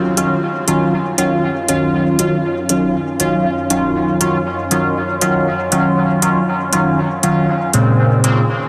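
Cavernous and nocturnal, this dub techno excerpt at 119 BPM in Eb minor, swung on the 16ths, sets juicy, detuned polysynth stabs with chorus, phaser and dub echo up front over smooth electronic hi-hats, while a deep, moody pad holds Ebm9 and Bbm9 chords in the background under a filter sweep and a very quiet, breathy wind-like noise texture enters at 0.6 s, all within a huge ambient reverb and a dense, heavily limited master.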